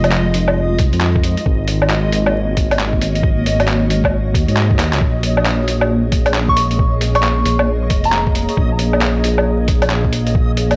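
A deep, rumbling detuned saw bass sits up front in this ghostly, nocturnal future garage excerpt, its saturated unison tone beating as it pumps against the sidechain between F1 and Ab2. At 135 BPM in 4/4 with a 63% swing on the 16ths, a lo-fi sampler-style kit of handclaps, hi-hat and woodblock sounds pitched down, muffled and compressed, with a drum fill at 4.8 seconds. A thumpy electronic kick, tape-toned and similarly muffled, joins at 0.8 seconds. Above it, a cloudy granular pad holds blurred, evolving chords in Bb minor, moving through Fm7, Ab9sus4 and Bbm7 with its own reverb and pumping. A reversed, dreamy texture swells on a sustained Eb5 in the background. Briefly, from 6.5 seconds, a soft, pure FM bell sings between Bb5 and Db6, coloured by chorus, 12-bit grit and analog delay, all within a dry, gritty hardware recording flecked with vinyl crackle and a light digital ambience.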